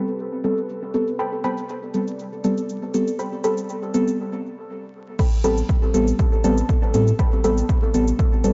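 Dub techno at 120 BPM in A minor, hypnotic and meditative, this excerpt opens on an Am9 chord with a background ambient pad of detuned sawtooth and chorus, up-front chord stabs laced with phaser and dub echo, a muted, evolving filtered stab riff from 1.2 s, and smooth layered hats, shaker and crash, then after a filter sweep and a short break, a punchy analog kick enters at 5.2 s, followed by a round sub bass at 5.4 s, with the pad, stabs, riff and bass pumping under a gritty, vinyl-crackled hardware sound.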